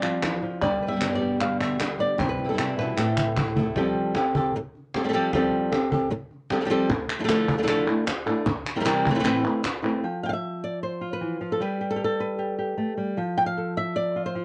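A fingerpicked flamenco guitar sits up front carrying the melody from A2 to G5 through this fiery, mournful flamenco excerpt at 153 BPM in 4/4, while a second guitar with audible finger squeak and a slapback echo adds chordal stabs over Fsus2, G, C and Am until 3.8 seconds. Crisp palmas hand claps in a live room and a woody, distant cajon with faint snares and hard hands drive the rhythm, the cajon playing a fill from 2.6 seconds and dropping out at 9.8 seconds. Once the palmas stop at 10.0 seconds, the lead guitar plays alone over G and Fadd9 to close. The whole recording carries light reverb and the worn, warbling pitch drift of old cassette tape.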